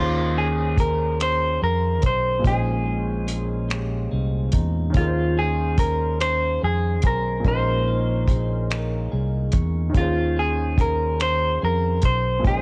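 A dry home cassette recording captures a late-night, sultry slow R&B piece in six-eight, cut from a longer track, where an up-front clean, picked electric guitar carries the melody over a round, amped fingered bass, an intimate grand piano with audible action noise and deep lows, a compressed, slightly broken-up second guitar tucked in the background, and a cloth-damped, thuddy drum kit of finger snaps, hi-hat and tight kick with a dark, rolled-off top that enters at 0.8 seconds, the harmony alternating between Eb13sus4 and Bbm11.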